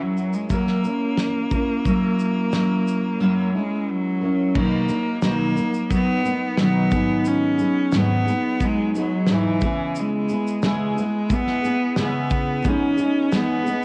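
A bowed cello and a fingerpicked steel-string acoustic guitar open this short stretch of reflective, wistful acoustic pop together, with a loose indie drum kit joining at 0.2 seconds. The cello carries the melody up front with a clear, smooth and even tone and vibrato, colored by cassette tape and a tape echo. Beside it, the double-tracked guitar supplies a close, warm accompaniment with fresh strings and audible finger squeak. The drums sit a little further back in a small room, with a punchy kick, a fat snare, a shaker and dark crash cymbals. At 4.6 seconds the harmony moves from F#7 into a Bmaj7, G#m7, C#m7 and Emaj7 progression. Light reverb and a cassette home-recording quality give the whole a homespun feel.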